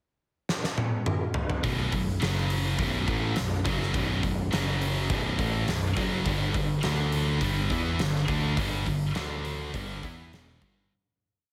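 Hard rock with a driving, menacing feel: a huge arena drum kit with a fat snare and punchy kick opens with a fill at 0.5 seconds, then at 1.6 seconds a bright, scooped high-gain guitar up front and a sludgy overdriven guitar in the background launch a power-chord riff over B5, F#5, G5 and D5, doubled by a growling overdriven bass in driving eighth notes, before a fade-out from 8.6 seconds, all carrying a heavily compressed radio sound with light reverb and small room ambience.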